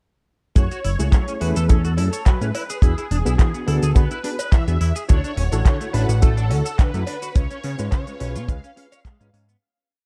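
At 0.6 s this sleek, cosmic nu-disco piece in F# minor drops in at 106 BPM with a lightly swung four-on-the-floor groove. A dry, tight kick sits up front beside a fat, sawtooth analog bass with tube saturation and a moving filter, playing a funky syncopated line. A crisp, layered pop kit adds handclaps, hi-hat and shaker, and a cowbell joins in the background at 2.0 s. Over this, a reedy electric piano with fast tremolo plays dotted-rhythm rootless chords, and a clean, picked electric guitar repeats a 16-step riff through lush chorus. A bold, detuned, wave-folded unison lead carries hook phrases with ensemble chorus and tape echo. At 5.1 s, as the F#m7 and E7 progression moves on to Dmaj7 and C#7, a dark, woody string section with vintage sampler grit and sidechain pumping adds sustained chords, all in a warm studio ambience before the piece fades out.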